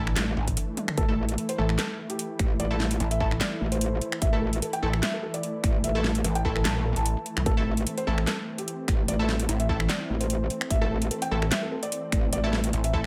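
A half-time groove with a light swing on the sixteenths drives this aggressive, menacing slice of heavy wobble dubstep, cut from a longer piece and built on a punchy, layered electronic kick alongside an up-front dubstep kit of huge snare, metallic hats, toms, handclaps and finger snaps with a tape-tinged edge, marked by a drum fill at 0.8 seconds. Two basses sit in the low end: a pulsing, heavy pluck wobble bass and a metallic FM wobble bass, both saturated, compressed and thickened with chorus and overdrive. Bold, bright orchestra-hit-like synth stabs cut through with a noise layer, their decaying tails carried by built-in reverb, cassette-tape colour and digital delay. Behind them, huge, lush detuned supersaw chords hold sustained harmony in the background, pumping under sidechain and darkened by a low-pass filter. From 1.0 seconds a soft, intimate felt-muted upright piano carries the melody, its thick felt and audible action noise lending a dark, mellow contrast, echoed by digital delay, all set in a light digital ambience.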